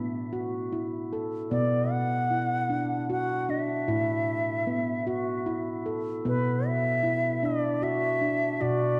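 Ringing stainless-steel handpan arpeggios, struck with sharp finger strokes, open this hypnotic, meditative world fragment at 76 BPM in 3/4 and B minor pentatonic, moving between A5 and Bm. At 1.5 seconds a pure bamboo bansuri enters with a soft-attack, vibrato-laden melody trailed by diffuse ambient delay, both instruments sitting up front in a wet concert-hall reverb within a dark, warm production.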